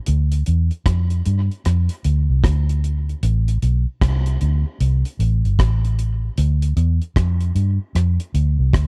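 A vintage muted fingered electric bass anchors this heavy, deep dub reggae excerpt, its round, punchy, foam-muted tone sitting up front between G1 and G2 with a dark, amped character. Beneath it, a dry, acoustic reggae drum kit with a tight kick, rim click and hi-hat carries a swung 4/4 feel, its rolled-off top keeping the sound smooth and shadowy. Both parts play throughout the roughly 9-second clip in a close, nearly reverb-free space.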